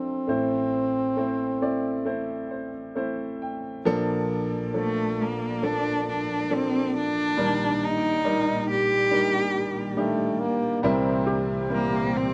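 A clear French horn with light vibrato and slapback echo opens this intimate, reflective acoustic folk-pop ballad over a boxy baby grand piano accompaniment, before a chamber string section enters at 3.9 seconds with warm sul tasto sustained chords, a nasal, expressive bowed cello takes the melody up front from 4.8 seconds with vibrato and portamento as the horn returns briefly, and a felt-muted upright piano adds mellow arpeggios from 11.3 seconds, all captured with close, detailed microphones and little reverb.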